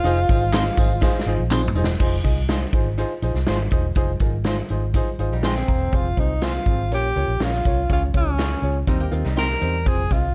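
Driving and passionate, this uptempo 1960s-style soul excerpt moves at 122 BPM in a straight 4/4 feel in F minor, with a dark production and light reverb. A close-miked tenor saxophone carries the melody up front in jazz style, with vibrato, a soft attack and scooped notes; it states a brief opening phrase and returns at 5.5 s. An intimate, woody upright piano with audible action noise and a slightly detuned character accompanies throughout and plays a fill just before the harmony moves through Fm, Bbm, Db and Cm. Underneath, a round, punchy, foam-muted electric bass and a swinging big-band drum kit sit up front, the drums ringing in a big natural room with a punchy kick, medium-tuned snare, crash, hi-hat and toms, and adding a fill near the start. Close, dry tambourine and handclaps appear only in the first 1.9 s, while a slightly broken-up, fingered electric guitar adds stabs and a clean, hollow-body archtop guitar slips a picked riff into the background.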